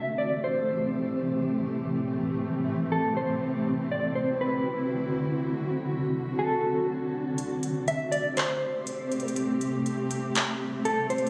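A half-time 4/4 pulse at 121 BPM underpins this ethereal, hazy cloud-rap hip hop piece in A dorian, cut from a longer work, where a blurred, detuned granular pad sustains Am7 and D7 chords in its own reverb beneath a dark, clean, fingered electric guitar melody carrying tremolo and delay, until a smooth electronic R&B kit of handclaps and hi-hat arrives at 7.4 seconds as the harmony returns to Am7, all captured on a phone in the room with light digital ambience and compression.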